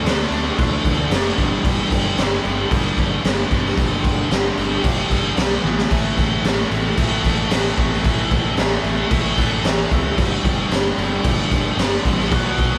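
Menacing and aggressive, this straight 112 BPM hard rock passage, cut from a longer piece, sets three bright, picked guitar riffs (one distorted and compressed, one overdriven, and a very quiet double-tracked high-gain layer, all sitting in the background) over a growly, punchy picked bass and an up-front raw garage drum kit with a boomy kick, high-tuned snare, toms and crash, its gritty, muffled lo-fi sound hitting a fill at 5.6 seconds as the chords move from D through G5 and A5, with the whole band playing live in one room under light reverb.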